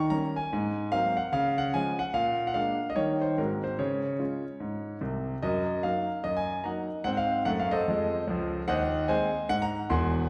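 Bathed in a wet recital-hall reverb with a 1.5-second decay, a clear, intimate grand piano sits up front with audible action noise and long sustain, playing swinging, playful stride jazz alone at 147 BPM in a swung 4/4, moving from a first section built on Eb7, Ab9 and Db changes into a second section at 5.4 seconds over Ebm/Gb and Ab7b9 harmony, in this 10.3-second cut from a longer piece.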